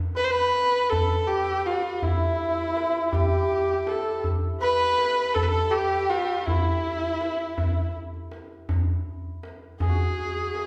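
A festive Persian modal ensemble piece in E dastgah shur, cut from a longer performance and moving at 54 BPM in 6/8, where a nasal, rich kamancheh sings the melody up front with vibrato and portamento over a shimmering, ringing santur second line and a deep tombak played with hard hands, while a lush, warm violin section slips in behind from 4.6 to 7.9 s, the ensemble set in the reverberant space of a recital hall.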